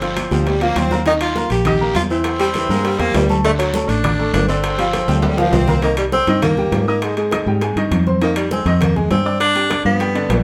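Heard in a moderately reverberant room where the band plays live together, this driving, fiery salsa excerpt in C minor at 201 BPM sets a warm, lightly vibratoed jazz tenor saxophone melody up front over a bright, woody upright piano, a dark, round fingered electric bass, background congas, very quiet high-tuned bongos and ringing metal-shell timbales. A raspy guiro joins the percussion and a close-miked pop-style saxophone section adds a second line until 5.8 s, when the music moves into a new section, with drum fills opening the passage and arriving again at 5.1 s.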